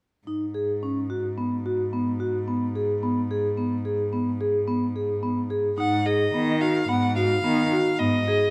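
Pensive and hypnotic, this fragment of contemporary chamber music in 5/4 sets a ringing, metallic vibraphone, struck with medium mallets and its motor off, playing arpeggios over a close, rich bowed cello bass with vibrato, joined at 5.8 s by a smooth, even bowed violin carrying the melody as the G#m harmony shifts to G#m7, all three parts up front in light reverb.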